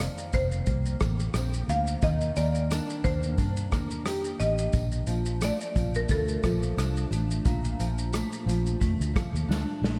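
Laid-back and sunny, this short cut from a longer indie and bedroom pop piece drifts along with a gentle swing, steeped in a lush hall reverb that gives the whole mix a dreamy haze. A buzzing, woody marimba struck with medium hard mallets carries the melody, colored by analog chorus and delay, and falls silent at 9.5 seconds. Beneath it, a fingerpicked steel-string dreadnought acoustic guitar supplies a warm accompaniment with chorus and vibrato, while a vintage foam-muted electric bass sits up front with a dark, round tone. An up-front unplugged drum kit played with bundle sticks keeps time on hi-hat, tight kick, rim click, shaker and snare, rounding things off with a fill from 9.5 to 10.0 seconds. A jingly tambourine glimmers distantly in the background as the harmony moves from F7sus4 to Ebmaj7 and settles on Bbmaj7.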